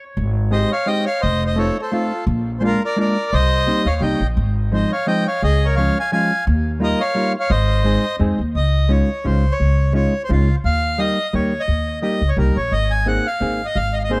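A woody, thumpy upright bass opens the excerpt at 0.2 seconds, plucked on gut strings, and a reedy accordion and a dark hollow-body electric guitar join it at 0.5 seconds. This is a charming, nostalgic musette waltz in 3/4 at 172 BPM with a swung feel, set in Ab major before moving to Db major at 8.6 seconds. The accordion carries the melody with a dry tuning and a full, airy tone, touched by an analog delay. The guitar, clean and fingered, supplies the accompaniment in the middle register, while the bass holds down the low end. The harmony moves through jazzy sevenths, sixths and added ninths, such as Abmaj7, F7, Bb7 and Cm7, before settling on Dbadd9, Eb and Abadd9 in the second section. Close, detailed microphones with little reverb keep all three parts up front and intimate, and the passage is cut from a longer piece.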